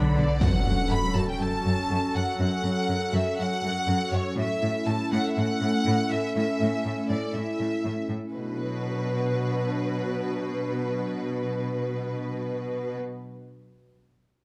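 A straight 4/4 pulse at 121 BPM drives this tense, vast cinematic excerpt in B minor, where a warbling, detuned tape-like pad holds dark, nostalgic chords with chorus and its own reverb over a rich, bowed cello section carrying the bass. A lush violin section with vibrato enters at 0.2 seconds to sing a focused, smooth-topped melody, and a huge, bright impact hits at 0.4 seconds, ringing until 2.4 seconds, while the harmony moves from F#m to A at 4.4 seconds before settling on Bm at 8.3 seconds. Close, detailed microphones and light reverb keep the strings up front within the vast sound.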